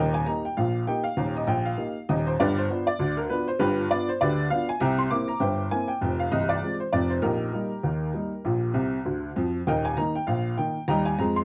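Lively and jaunty, this short ragtime piano excerpt, cut from a longer piece, bounces along in 2/4 with a gentle swing on the sixteenth notes. A clear upright piano plays solo throughout, ranging from deep bass notes at C1 up to high treble at D6. Its tone is woody and worn, slightly detuned in the way of an old, well-used instrument, yet open and sitting up front in the mix. The harmony moves through a classic ragtime progression, stepping from the home chord through G7, C7 and Fm before settling back via Bb, and a brief piano fill between 8.8 and 9.7 seconds leads into the return to the tonic. The sound is dry and close, like a 1970s studio recording, touched by only a light reverb.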